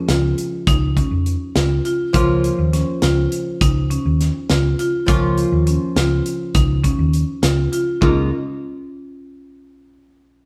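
The hollow-body short-scale electric bass leads the mix, fingered low in its register with a dark, round, amped tone that sits up front. This short cut from a longer progressive instrumental drives along in an uneven 5/8 at 204 BPM counted in eighths, with a straight, intricate feel in D-flat major, tuned slightly below standard pitch. Hard-mallet marimba on rosewood bars plays bright, woody, close-miked arpeggios that sound dry and full. A clean, picked archtop guitar, miked through an amplifier, fills in the accompaniment with a hollow-body character. A punchy acoustic studio kit of kick, high-tuned snare and hi-hat sits mid-forward with a rolled-off top. The band plays together live in one room with a moderate stone-room reverb, and the harmony moves from Db6 to Bbm over a Db bass at 2.1 seconds, returning to Db6 at 8.0 seconds as the parts drop away shortly after.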